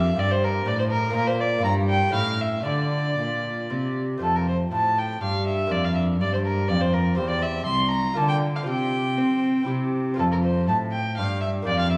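A dark, nasal violin carries the melody in period style, bowed up front with a reedy gut-string tone, in this serene, dance-like baroque-style sonata movement that begins in D minor and settles into F major at 4.2 seconds, in 3/4 at 121 BPM with a rubato feel. A rich, close cello bows along beneath as the bass, while a delicate fingerpicked lute with double strings fills in the accompaniment. The studio ambience carries a moderate scoring-stage reverb, and the excerpt is cut from a longer piece.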